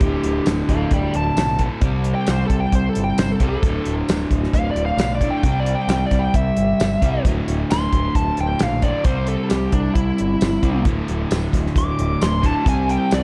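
Classic rock at 133 BPM with a swaggering, brooding mood, this excerpt features a bluesy, distorted lead guitar soloing through its entire 13.2 seconds over a double-tracked, hollow-bodied semi-hollow guitar riff and a growling picked electric bass with overdrive. A damped 70s drum kit sits up front with a fat snare, tight kick, rolled-off top, hi-hat and tambourine. Chords shift between D5 and C, and a moderate recital hall reverb gives the whole mix a big arena sound.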